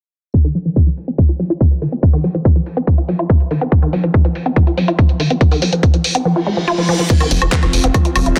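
Psychedelic trance, intense and hypnotic, cut from a longer piece, opens at 0.3 seconds with a tight, up-front electronic kick, a garage drum kit of bright hi-hats, crash cymbal, handclaps and woodblock, and a woody, wave-folded pluck riff carrying chorus, tape echo and sidechain pumping under a long filter sweep. A reverse cymbal builds into the change at 7.1 seconds, where an airy, breathy pad with slow attack sits in the background and a round analog bass with ring modulation enters deep and dark just after. The dense, heavily limited master has light reverb and a low-pass filter.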